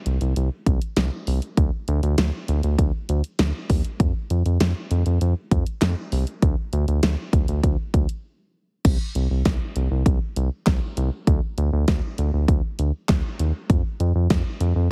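A round, dark analog bass of evolving sawtooth and sine tones with ring modulation opens this cool, melancholic synth-pop excerpt together with a layered electronic pop drum kit of punchy kick, fat snare, hi-hat, handclaps and crash cymbal, both parts up front in a dry, heavily compressed radio-style mix, with a brief break at 8.2 seconds before a new section takes over and the bass sustains to 14.9 seconds.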